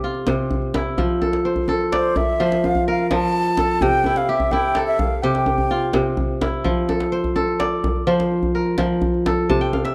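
A bright, crisp kora sits up front, its fingerpicked arpeggios ringing through a flowing West African traditional piece in 12/8 at 85 BPM in F major, moving between C and F chords and closing with a short fill at 9.5 seconds. A deep, saturated djembe provides percussion throughout, while a breathy, mellow wooden flute, close-miked with vibrato and a soft attack, carries the melody from 1.9 to 6.2 seconds. A moderate recital hall reverb and a dark, warm production shape this cut from a longer piece.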